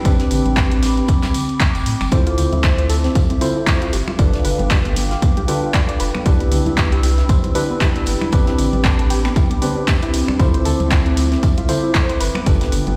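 Deep and warm, this swung deep house excerpt rides a punchy, tape-warm electronic kick up front and a sub bass with octave, with a drum machine's finger snaps, handclaps and hi-hat, ringing high-tuned congas and dry tambourine and snare in the background, while tine electric piano stabs with delay and a warbly, nostalgic tape-like pad sustain chords from Am11 through Dm9, G7 and Cmaj7, both pumping under sidechain, and a soft round pluck enters at 2.1 seconds with dub-echoed arpeggios in a bare stone room.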